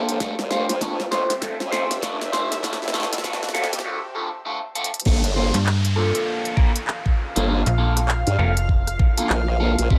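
A knocking electronic kick drum sits up front in this swaggering, funky glitch hop cut, layered with a pop drum kit whose fat snare, crisp hats, handclaps, rim clicks and crash cymbal carry a tape-warm sheen and studio reverb over a swung groove. Beneath it, a formant-sweep wobble bass built from square and sine tones wobbles through chorus and tube saturation, while an electric guitar at the edge of break-up plays dark, picked stabs treated with phaser, sidechain pumping and tape echo. A granular cloud pad drifts in the background, blurred and evolving, pumping with the sidechain, and a riser and downlifter add electronic sweeps behind the mix. The first half is a build-up over Fmaj7, with drum fills, a filter sweep on the guitar and a break from 3.8 seconds. At 5.1 seconds the drop lands on Gm7, and a snappy, metallic slap-like FM bass joins from 5.5 to 9.0 seconds, sharpening the funk before the excerpt cuts off.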